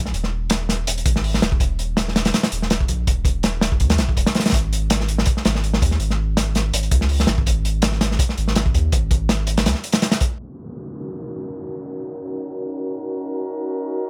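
A crunchy, gritty breakbeat kit with a tight kick and medium-tuned snare drives this raw, frenetic drum and bass excerpt over a deep, saturated sub bass until about 10 seconds, when both give way to an airy, breathy pad with chorus and a filter sweep, joined briefly by an electronic downlifter, all in a low-passed studio ambience.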